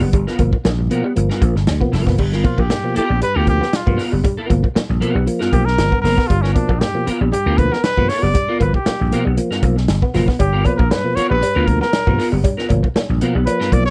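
Funk at 117 BPM in 4/4 with a straight, energetic and playful feel, opening on a G7#9 chord as a growly, punchy slap bass and a warm soul drum kit with dark cymbals sit up front beneath a clean picked electric guitar with ensemble chorus and tonewheel organ stabs with key click through a stopped rotary speaker. A twangy, slightly broken-up guitar riff through a small old amp with harmonic tremolo plays in the background, and from 2.4 s a clear trumpet with light vibrato takes a jazz-style solo up front. A metallic, saturated cowbell joins at 10.4 s, all set in a small room ambience in this excerpt cut from a longer piece.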